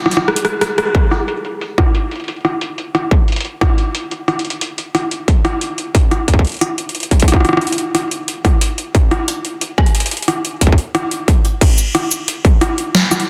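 This eerie, intricate IDM excerpt at 90 BPM opens with an analog drum machine playing a brief fill in the break, its punchy snare, metallic hats, rim clicks, shaker and crash cymbal overdriven and set in a large room, with delay on the kit. At 0.9 seconds an up-front, distorted, tape-warm electronic kick joins, and a filter sweep runs over the drums until the section change at 11.6 seconds. The kick drops out at 12.6 seconds, leaving the drum machine to finish under a moderate plate reverb in a dense, heavily limited master.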